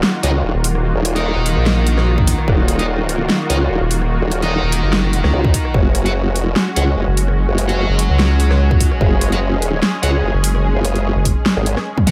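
Lightly reverberant and heavy, this menacing wobble dubstep excerpt at 147 BPM moves in a swung half-time feel in Eb minor, setting two up-front, saturated wobble basses (one a pulse-and-sine formant sweep, the other a nasal, dark vowel sweep, both chorused and overdriven) beneath lush, detuned supersaw chords that pump with sidechain through a low-pass filter, alongside bright, double-tracked distorted guitar stabs roughened by 12-bit sampler grit and analog delay, a tape-warm drum kit with a huge snare and metallic hats, and a punchy electronic kick that lands briefly at 2.2 and 5.4 seconds before holding from 8.7 seconds.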